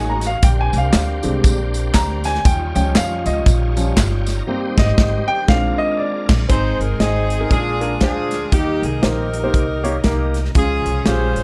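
A polished grand piano leads this hopeful, soulful uptempo gospel excerpt in Ab major at 119 BPM with a swung 4/4 feel, taking a solo over a woody, growly upright bass, a tight up-front acoustic drum kit, tambourine and handclaps until 4.4 seconds, a shouting tonewheel organ with slow rotary speaker, overdrive and key click in the background, and a very quiet, distant French horn section, before a band accent at 4.5 seconds and a punchy, close-miked saxophone section taking the melody from 6.5 seconds, all set in a small room with light reverb.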